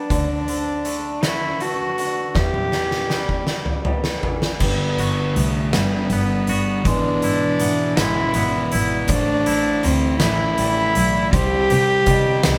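A bowed cello carries the melody up front from the start, sul tasto with a soft attack and a pure, floating tone. Beneath it run fingered arpeggios on a clean, twangy electric guitar and mellow vibraphone arpeggios played with soft mallets, motor off, in the background. A single bowed double bass, dark and woody with vibrato, sits distant underneath, while an oversized, low-tuned acoustic drum kit enters almost at once, up front with a punchy kick, fat snare, hi-hat, toms and crash cymbal in a bright, pumping stone room. A drum fill runs from 2.4 to 4.6 seconds, and at 4.6 seconds a dark, picked fuzz guitar joins with a distorted riff as the harmony moves through Gmaj7, E7/G# and Am7 before landing on Cm. This is cinematic, euphoric post-rock in 6/8, captured as a band playing live in one room with moderate stone reverb, and it is cut from a longer piece.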